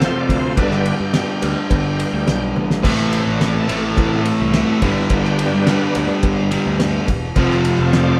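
A straight 4/4 classic rock groove with a swaggering, brooding mood drives this short cut, as a cloth-damped, thuddy drum kit with a fat snare and dark cymbals sits up front alongside a crunchy overdriven guitar riff, a punchy fuzz bass, a shouting tonewheel organ in the background on slow rotary speaker, a very quiet reedy electric piano and a faint metallic cowbell, all played live in one room with moderate reverb, until a drum fill at 2.6 seconds ushers in a cranked stack guitar riff at 2.8 seconds.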